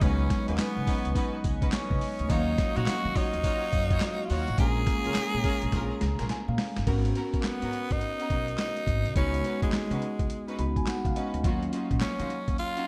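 A bright, 1980s-style digital production sits in a moderate plate reverb, giving this punchy, bouncy new jack swing cut from a longer R&B piece a glossy sheen. Up front, a compressed, pitched-down boom bap sampler-style drum kit drives the swung sixteenth-note feel with a thumpy kick, high-tuned snare, handclaps, hi-hat, tambourine and crash cymbal, coated in vintage 12-bit sampler grit and gated reverb. A woody, growly upright bass plays pizzicato underneath, while a mellow, clean tine electric piano bathed in lush chorus supplies the accompaniment and drops in fills at 5.7 and 10.3 seconds, the first alongside a drum fill. Earthy, close chamber strings add bowed stabs with light vibrato, and a shimmering, detuned pulse-width pad hovers in the background with sustained chords until 6.8 seconds. On top, a raspy, edgy tenor saxophone carries the melody with scooped notes and vibrato, close-miked in a pop solo style.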